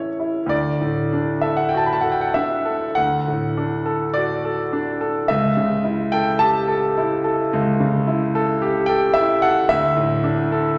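A clear, up-front concert grand piano opens this fragment of a longer romantic classical nocturne, playing alone in D major at a slow, rubato 46-56 BPM in 4/4, its smooth, vintage tone and deep bass moving through A, D, A7/C# and D5 chords within a wet concert hall reverb that deepens the nostalgic, dreamy mood.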